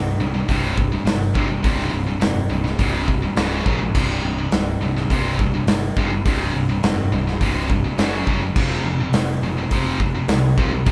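A straight 4/4 pulse at 104 BPM drives this dark, heavy metal passage, cut from a longer piece and lasting about 10.9 seconds. Two high-gain distorted electric guitars play the riff from the start, both bright and picked, one carrying a scooped tone, both sitting low between C2 and F#3 on power chords that move from C5 to Db5 and back, then to F#5 and F5 near the close. A modern picked electric bass, direct and growly with a punchy attack, holds the low end from C1 to C2. The big acoustic rock kit enters at 0.5 seconds with a punchy kick, a medium-tuned snare, hi-hat, and crash cymbals that ring bright, and it sits up front, a touch louder than the strings. The band sounds as if it is playing live together in one studio room with moderate ambience.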